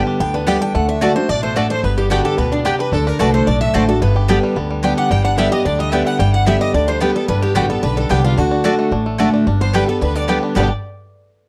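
This driving, lively bluegrass excerpt in G major opens at once with a mellow, twangy banjo melody played with fingerpicks, a bright jumbo guitar picking out accompaniment with audible finger squeak, and bright, woody double-strung mandolin stabs. At 0.2 seconds a second picked guitar, an up-front dreadnought, takes up a melody line in a higher register, while a thumpy, woody upright bass plucks the low end. A clear, nasal fiddle joins at 1.3 seconds as a second line, sitting distant in the background with light vibrato. At 220 BPM in a straight 4/4, the harmony moves mostly between G and D. The sound is a dry, close 1970s-style studio recording with light reverb.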